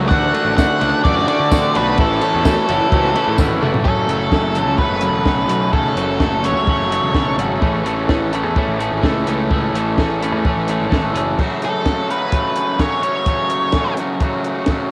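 Upbeat and carefree, this indie rock excerpt, cut from a longer piece, moves at a straight, steady stride with a homemade cassette character and a light touch of reverb. A crunchy overdriven guitar sits up front playing a bright, picked riff. Behind it, a compressed twelve-string electric guitar shimmers through lush chorus and analog delay, while a growly, punchy fuzz bass drives underneath. A compact cocktail drum kit with a high-tuned snare and punchy kick has a dark, rolled-off top, and a jingly tambourine rings in the distance early on; a breathy, mellow alto flute with vibrato slips in briefly at 2.5 seconds. An octave-fuzz lead guitar carries the distorted melody, and after the twelve-string and bass drop out at 11.4 seconds, the lead returns at 11.6 seconds over the chords that close out the passage.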